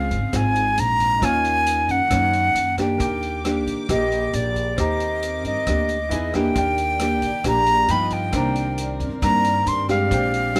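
Bossa nova with a sunny, breezy mood, this short cut from a longer piece features a breathy, up-front silver concert flute carrying the tongued, straight-toned melody over a full-bodied fingerpicked nylon-string guitar, a growly pizzicato upright bass and a vintage drum kit with a punchy kick, hi-hat and rim click, while a clear grand piano and a dark, floating bowed string section sit in the background, all bathed in light reverb.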